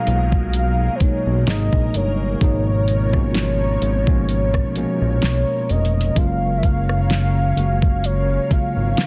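A dreamy, tender slice of contemporary R&B, this excerpt moves at an unhurried pace with a light sixteenth-note swing, drifting from G#m9 through G#9 and C#13/G# before settling on F#maj7 at 6.2 seconds. A velvety synth lead carries the melody in a narrow upper range, its detuned sawtooth tone softened by chorus, delay and gliding portamento. Beneath it, a worn, slightly out-of-tune tine electric piano plays mellow accompaniment, while a lush, bright unison pad holds sustained chords that breathe with phaser and sidechain pumping. A fat analog bass, thick with detuned sawtooth and ring-modulated color plus a filter sweep, sits up front from 0.1 seconds alongside an electronic drum kit of knocking kick, fat snare, rim click and metallic hi-hats with a tape-warm character. Digital ambience surrounds the parts, and the dense, heavily limited master keeps the low end and drums prominent.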